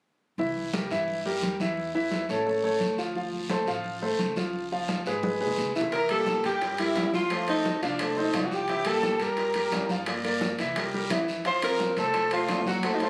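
Captured on a phone in the room, this short cut from a longer piece of Afro-Cuban jazz carries a light reverb and a touch of studio ambience, with a lively, sunny mood at 174 BPM in a straight 4/4, centred on C mixolydian. From 0.4 seconds a clear, intimate grand piano sits up front, its action noise audible as it comps through chords such as C7, Aaug, Dm7 and Db7. A woody, growly pizzicato upright bass plays beneath it, joined by bright, damped congas in the background and a raspy guiro. A drum fill at 5.2 seconds leads into a new section at 5.9 seconds, where a breathy alto saxophone steps forward to carry the melody with vibrato, scooped notes and a slapback echo. A distant, airy concert flute adds a second line above it, while round, low-tuned bongos and ringing metal-shell timbales fill out the percussion as the harmony moves through C7, F7 and Gm before settling on F.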